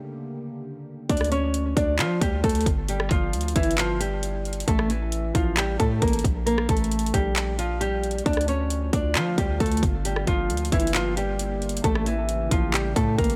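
A half-time trap groove at 134 BPM in 4/4 drives this menacing, melancholic hip hop piece in D harmonic minor, cut from a longer work. After a brief opening break where only a deep, detuned ambient pad holds sustained chords, the electronic trap kit enters at 1.1 seconds with a hard-clipped kick, metallic hi-hats, handclaps and rim clicks sitting up front. A punchy, heavy 808-style bass arrives alongside it, its sine tone layered with noise and decaying after a fast attack. Carrying the melody, a small, fingerpicked nylon-string guitar sits close in the mix, softened by a low-pass filter and trailed by delay. The dark, wave-folded pad, thickened with chorus and reverb, returns in the background from 8.9 seconds as the chords move from Dm through Gm to a tense A7, all set in a digital ambience.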